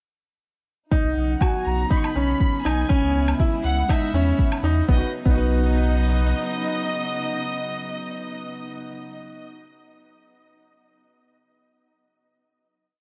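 Piano and strings electronica in B major at 121 BPM, hopeful and luminous, where a clear, woody upright piano ostinato and a lush violin section melody in arch phrases, filtered and swept during the build from 0.9 to 4.9 seconds, sit above a dark, sul tasto string pad, a round sine sub bass pumping off the beat, an overdriven four-on-the-floor kick up front and a faint overdriven woodblock, before settling on a final Badd9 chord from 4.9 seconds in a small room.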